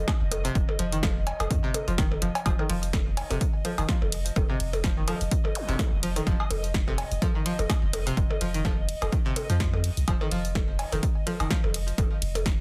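Quirky and sparse, this minimal techno excerpt moves at 126 BPM in 4/4 with a 16th-note swing, built over an F5 chord. An up-front punchy electronic kick and a deep, sine-based sub bass with a pitch-drop attack and sidechain pumping anchor the groove, while an analog drum machine adds hi-hat, ride and a punchy snare, and layered cowbell and percussion blips, re-recorded in a small room, dot the pattern. A twangy, nasal, string-like resonator pluck with a filter sweep, chorus and delay carries the riff from 0.4 seconds, a detuned, pulsing gated texture hovers in the background with chorus and reverb, and a brief zap flickers at 5.6 seconds, all set in light reverb and a dense, heavily limited modern master.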